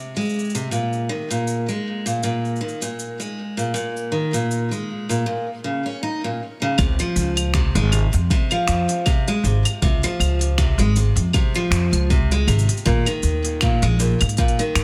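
A bright, up-front picked steel-string acoustic guitar opens this delicate, warm folktronica excerpt, its arpeggios touched by tape echo and audible finger squeak, while an organic electronic kit of claves, finger snaps, shaker and crisp hi-hats, re-recorded in a large room, settles into a gently swung groove. At 6.8 seconds a woody, thumpy pizzicato upright bass on gut strings arrives up front alongside a deep electronic kick, as the harmony moves from a rootless Fm/C and Ebsus4 to a Dbmaj7 before returning to Ebsus4. Light reverb and digital ambience frame the warm sound.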